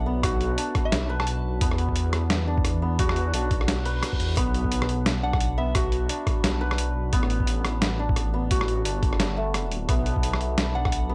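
Dark and heavy, this excerpt from a longer half-time drum and bass track moves at 174 BPM in B minor, its sixteenths carrying a loose swing. A deep, rumbling detuned saw bass sits up front with tube saturation, its beating unison tone giving the low end a gritty weight, while a hammered santur plays shimmering, ringing arpeggios through analog delay. The drums come from a gritty, pitched-down, sampler-style boom bap kit with hi-hat, rim click and a medium-tuned snare placed up front, joined by a thumpy, tape-colored electronic kick that sounds re-recorded in a small room. A soft, pure FM bell drifts in the background with chorus and delay in brief phrases around 0.9 seconds and 5.2 seconds, and an electronic reverse cymbal sounds at 3.8 seconds. The harmony moves from Bm7 through E5, Bm and Gmaj9 back to Bm7, all captured in a dry, hardware-rough mix with little reverb.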